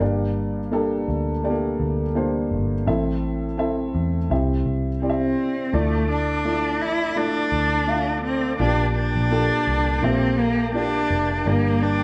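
Piano-driven pop with a driving, bittersweet mood and a light swing in its 4/4 pulse, this passage is cut from a longer piece. A dark upright piano carries the accompaniment from the start, woody and boxy with long sustain and audible action noise that gives it an intimate, up-front presence, while a vintage muted picked electric bass sits beside it, round, amped and foam-muted. At 5.0 seconds a single bowed cello takes the melody, expressive and warm, with vibrato, a soft attack and portamento slides, standing slightly louder than the rest. A tonewheel organ joins at 5.7 seconds with sustained chords tucked in the background, clear and lightly overdriven with key click, chorus vibrato and a slow rotary speaker. The harmony moves from Gm through Am and C into a Dmadd9 and Bb6 before returning to Gm. The band plays live in one room, wrapped in a moderate large studio reverb.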